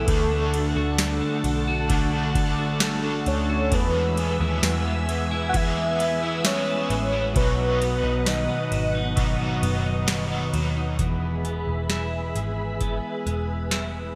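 This dream pop excerpt opens with everything arriving at once: a velvety, detuned synth lead carrying the melody over a lush string machine, a clean picked electric guitar spinning arpeggios through chorus and delay, an overdriven semi-hollow guitar with harmonic tremolo, and a dark, round, foam-muted picked bass. A booming analog drum machine joins at 0.1 seconds, its deep kick, crisp snare, metallic hi-hats, ride cymbal and tambourine overdriven and drenched in gated reverb, sitting up front in the mix. At a slow 66 BPM in straight 4/4 and E major, the harmony moves from D to E to B and back to E, creating an ethereal, floating mood. The synth lead, soaked in chorus, tremolo and delay, drops out at 9.2 seconds, and the bright hollow-body guitar stops at 11.5 seconds, leaving the mellow sawtooth string pads, arpeggiated guitar, bass and drums to carry the final stretch. A moderate plate reverb and a bright 1980s-style digital production give the whole excerpt a glossy, spacious sheen.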